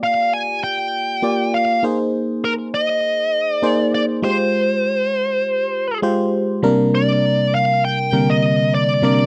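A smooth, overdriven lead guitar carries the melody with slapback echo over a glassy, bell-like FM electric piano with chorus, both up front from the opening of this dramatic, urgent pop fragment at 100 BPM, which moves from Gm7/Bb through Abadd9 and Fmadd9 to Gm/C at 6.6 seconds in a dry, close 1970s-style studio sound with moderate booth ambience, tuned to A4 = 439 Hz.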